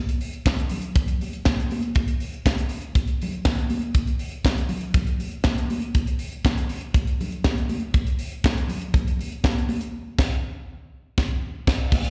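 Heard live through a venue's PA with light, recital-hall reverb, this excerpt from a longer piece is a danceable, sultry disco groove at 120 BPM in a straight 4/4. A tight, up-front funk kit drives it from 0.1 seconds, its mid-forward small-room sound carrying a high-tuned snare, a tight kick, hi-hat, handclaps and crash cymbal. Bright, thin-skinned congas enter at 0.5 seconds, played with hard hands and set distant in a large room with slapback echo, before a band accent lands at 9.9 seconds.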